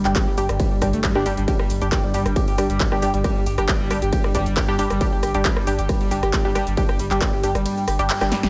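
Driving peak-time techno at 136 BPM in a straight 4/4, this short cut from a longer piece feels relentless from the first beat. A distorted electronic kick, layered and sitting up front with the size of a large room, anchors the groove until 7.3 seconds, while a dry, punchy analog drum machine adds an overdriven snare, handclaps, hi-hat, ride cymbal, rim click and shaker. Underneath, a thick, deep sub bass with tube saturation and sidechain pumping holds G1, and a very quiet, eerie FM drone with a slow attack and long release hovers around G2 with a metallic, inharmonic shimmer. The overdriven synth lead plays a gritty, screaming, guitar-like riff between G3 and G4, bright with vibrato, phaser, chorus and a trailing dub echo. Filtered dub chord stabs in the same register give short, muted, detuned plucks with chorus and delay, pumping against the kick. Light digital reverb frames the mix, and near the end a band accent arrives at 8.1 seconds, followed by a drum fill at 8.3 seconds.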